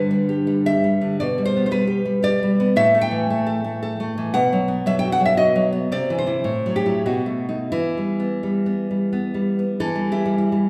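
Wistful and passionate, this romantic piece for solo classical guitar in E minor moves in a flexible, rubato 3/4, with the tempo drifting between 82 and 119 BPM. A single nylon-string guitar, fingerpicked and placed up front, carries the whole piece across a range from G2 to G5. Its acoustic tone is warm and its strings are fresh, and the instrument is tuned to A4 = 444 Hz. The harmony opens on G and G/B, passes through A5, B5 and C, then tightens through F#m7b5/A and B7 before settling on Em at 7.7 seconds. A wet recital-hall reverb with a 1.3-second decay surrounds the guitar, giving the sense of a church or concert hall, and the short passage, cut from a longer piece, ends at 10.7 seconds.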